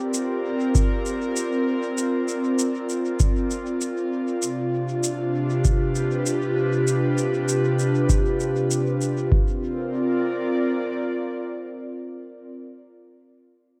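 Ambient dub at 98 BPM with a light sixteenth-note swing and a deep, spacious mood, this excerpt sets an airy, breathy pad of detuned, chorused tones holding sustained chords from C5 through G7/C to C9sus4 across the whole passage, while an up-front, tape-warm electronic kick enters at 0.8 seconds and a quiet overdriven shaker trails dub echo until about 9.1 seconds, all washed in a moderate spring reverb and an echo-heavy mix.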